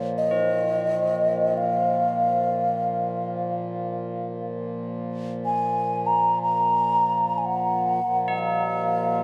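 A low xiao, airy and up front with vibrato, carries the melody in a diffuse ambient delay over a reedy pedal harmonium drone and the bright, close-miked ringing of tubular bells, all in free time within a huge reverb and a dark, warm production that gives this world meditation excerpt a spacious, haunting feel.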